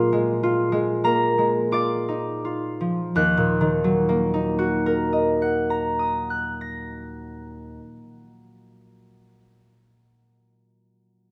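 The concert harp plays alone in this short classical fragment, cut from a longer piece. Its acoustic, fingerpicked tone rings out up front, spanning from Eb2 up to Bb6. The mood is mysterious and wistful, in Eb minor and 3/4 time, with a rubato feel hovering between 40 and 52 BPM. The opening slows down over its first 3.2 seconds on a Bb7 chord before settling onto Eb minor at 3.2 seconds, where a new section begins. The harp sits in a wet recital hall reverb with a 1.5-second decay, giving each note a lingering halo until the harp stops at 8.9 seconds.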